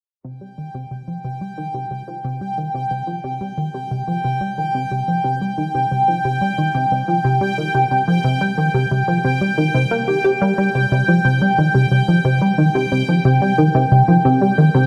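A straight 4/4 pulse at 90 BPM drives this expansive, hypnotic piece of sequencer-driven ambient space music in C minor, tuned to A4 = 441 Hz and cut from a longer work. A punchy, funky analog bass riff with a detuned sawtooth edge and a fast filter pluck fades in from 0.2 s, ranging from C3 to G4 and treated with analog chorus and delay. At 1.3 s a bright, resonant, bubbling texture enters on a sustained G5, its random filter steps emerging on a slow attack through chorus and built-in reverb, while a wet plate reverb with a 3.3-second tail lends the whole a spacious sheen.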